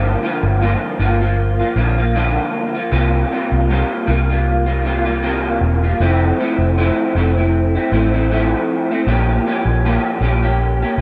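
An electric guitar played through a small old amp sits up front, its picked, slightly broken-up lo-fi tone colored by an ensemble chorus and a warbly pitch drift. This is a sunny, nostalgic slice of indie and bedroom pop in F major, cut from a longer piece, moving at a relaxed 78 BPM in 4/4 with a gentle swing on the sixteenths. A vintage muted fingered electric bass plays underneath for the full 11 seconds, dark, round and foam-muted, with an amped presence that keeps it close to the listener. The harmony moves from Gm7 to C7sus4 at 2.9 seconds, settles on Fmaj7 at 6.0 seconds, and turns to Bbm6 at 9.1 seconds, giving the passage a wistful lift. Light reverb and tuning to A4 = 438 Hz add to the hazy, homemade character.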